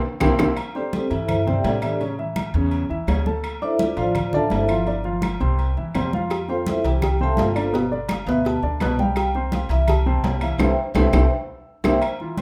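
A straight 4/4 groove at 168 BPM drives this lively, sunny Afro-Cuban jazz in C major: thick-skinned, damped congas, a tight, high-tuned cowbell that sounds briefly at the start and returns at 6.3 s, distant, ringing timbales and agogo bells in a large room, and dry, woody claves in the background surround a growly, steel-strung pizzicato upright bass and a dark, short-sustained baby grand piano up front, while a vibraphone played with soft mallets takes a mellow, airy solo with medium motor vibrato from 0.8 s, set in a light reverb, with drum fills and band accents marking the opening and the close from 10.6 s.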